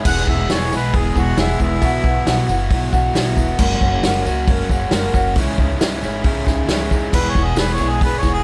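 Hopeful and open-road in spirit, this short folk rock and heartland rock excerpt moves at a straight 136 BPM in E lydian, with chords passing from E through Bsus4, F#add9 and C#madd9 before returning to E at 7.1 seconds. A boxy, ladder-braced acoustic guitar picks the accompaniment with audible finger squeak, an overdriven, double-tracked garage guitar drives the riff, a woody pizzicato upright bass anchors the low end, and a vintage kit with a tight kick and rolled-off top sits up front, joined by a jingly tambourine tucked in the background. A close-miked harmonica with light vibrato carries the second line from 0.1 to 2.5 seconds and again from 7.1 seconds, all in a dry room with little reverb.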